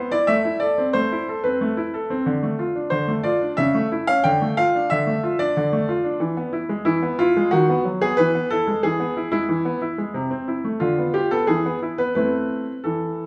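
A bright, brilliant baby grand piano sits up front in a wet recital hall, its open tone ringing into a generous reverb. This elegant, graceful classical-period sonatina in A minor moves at 91 BPM in a straight 3/4, the solo piano ranging from C3 to G5 as the harmony passes from A minor through D minor to E, then settles back on A minor at 12.2 seconds. The passage is cut from a longer piece and runs for 13.3 seconds.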